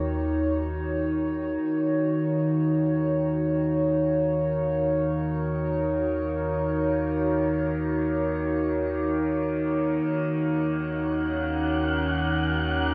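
Serene and reflective, this free-time ambient passage in Eb minor rests on a single Ebm7 chord, with a warbly, nostalgic tape-like pad carrying sustained chords up front through chorus and shimmer reverb. Beneath it a round sine sub bass and a resonant, wave-folded drone with moving overtones and phaser both fade in from 1.6 seconds, the drone sitting in the background. At 11.0 seconds a breathy, wind-like tuned noise texture drifts in high above, all of it soaked in a huge, dreamy reverb in this section cut from a longer piece.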